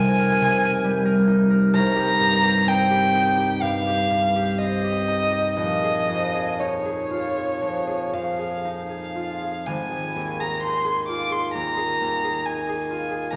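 Violin and harp begin together in this short classical fragment, an impressionist duo in Ab major that unfolds with a gentle rubato at 58 to 70 BPM in 4/4. The solo violin carries the melody between Db5 and D6 with a dark, intimate tone: played sul tasto with a soft attack, light vibrato and a smooth top, it sits close and up front. Beneath it, the concert harp supplies a fingerpicked accompaniment from Ab1 up to Bb4, its acoustic strings ringing and also placed up front. The harmony drifts from Fm11 to Cm7 at 1.7 seconds, then to Bbm11 at 5.6 seconds, before settling on an open Ab5 at 9.7 seconds. A wet recital hall reverb surrounds the pair, lending the 13.4-second passage a pastoral, luminous glow.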